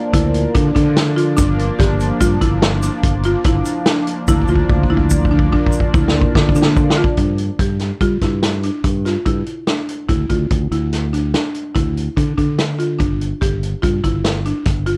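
Progressive instrumental band music in an uneven 7/4 meter, bright and intricate, where a buzzing, woody marimba spins arpeggios over a fretless electric bass and a punchy, up-front vintage drum kit that plays a fill from 4.3 to 7.2 seconds, while a silky, chorused analog string pad and a grainy egg shaker color only the opening seconds of this dry, gritty fragment cut from a longer piece.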